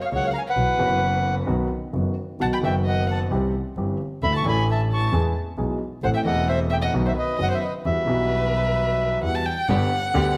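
Tango, melancholic and passionate, in a rubato feel, cut from a longer piece. A reedy, vintage bandoneon carries the melody up front, its band-limited tone sitting high in its register, while a single bowed violin plays a second line beneath it with soft attack, vibrato and expressive portamento. A clear, polished grand piano accompanies across a broad span from the low bass to the middle register, its long sustain ringing through the harmony, and a bowed double bass adds a woody, smooth-topped foundation with vibrato. The chords move through minor-key colour, with suspended and added-note voicings, before arriving on G at 9.7 seconds, where a lush, very quiet studio string section enters briefly with close, bowed stabs. A moderate recital hall reverb surrounds the ensemble with a sense of space.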